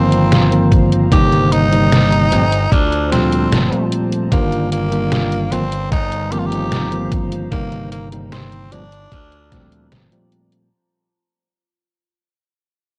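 A raspy, gritty tenor saxophone carries the solo melody with pop-style vibrato, its tone smeared by cassette tape and tape echo in this woozy, melancholic vaporwave excerpt cut from a longer piece. Beneath it, a bell-like tine electric piano sits up front, clean and bright through its built-in speakers with analog chorus, playing accompaniment over chords that circle from F7sus4/G through Cm7/G to Gm11 and Ebmaj9/G. A glassy slap bass adds punchy, direct low notes with tube saturation, while a warbling, detuned pad with slow attack and long release hovers far back, softened by chorus, phaser and its own reverb into a mellow, nostalgic haze. A detuned 8-bit drum machine supplies hi-hat and a medium-tuned snare, and a thumpy electronic kick enters at 0.7 seconds, both colored by cassette tape. The home-recorded, lightly reverberant sound begins fading out at 2.2 seconds and continues to fade through the end at 10.7 seconds.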